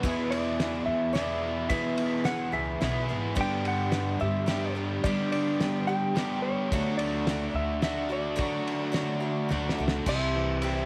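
Jangly and warm, this brief folk rock and heartland rock excerpt moves at 108 BPM in a straight 3/4 in D major, with a dark, clean lap steel guitar carrying the slide melody over a shimmering, octave-doubled twelve-string acoustic guitar, an up-front, double-tracked overdriven electric guitar riff, a woody, growly pizzicato upright bass and a cloth-damped, thuddy drum kit with a fat snare and dark cymbals, all in light studio reverb as the chords pass from E to G to D and a drum fill at 9.5 seconds leads into C.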